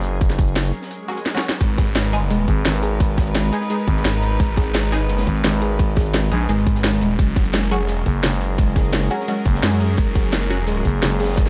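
The recording has a dark, warm digital ambience, its top end rolled away above about 10.6 kHz. This aggressive slice of dark technical drum and bass, cut from a longer piece, is built on two up-front basses: a growling FM bass present throughout and a thick, swirling detuned saw bass with phaser, tube saturation and sidechain pumping that joins at 1.6 s. A tight, layered electronic kick sits up front with studio reverb, joined by an electronic kit of cracking snare, crisp hats, ride and cabasa, while a very quiet, gritty breakbeat kit with a high-tuned snare murmurs underneath. A bowed studio string section in a reedy, gut-string period style holds sustained chords with 12-bit sampler grit and pumping, and a muted, deep chord stab drenched in phaser, lush chorus and tape echo sits in the background. After a brief break around 0.9 s, where an electronic swell and a drum fill lead in, a soft, round wave-folded pluck takes up arpeggios with chorus and tape echo as the harmony moves from F# to G#m and back to F# at 7.2 s.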